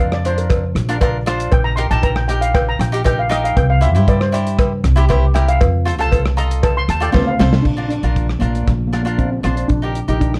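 A shimmering steel pan, played as double seconds with medium rubber sticks and heard in a boxy small room, carries the melody as a solo for the first 7.7 seconds of this bouncy, sunny calypso excerpt. Beneath it, a crisp, picked cavaquinho supplies chords through Bb, Eb over Bb, C7 and F7, then settles on Bb and Ebmaj7 over Bb. The upright bass sits up front as the loudest part, its woody, thumpy pizzicato on steel strings grounding the straight 4/4 feel. A modern studio drum kit with tight kick, medium-tuned snare, rim click, hi-hat and crash sounds dark and smooth with a rolled-off top, while a close, metallic cowbell continues until 7.3 seconds, overlapping a drum fill that starts at 7.1 seconds and leads into the next section. Light reverb and a warm overall production round off the sound.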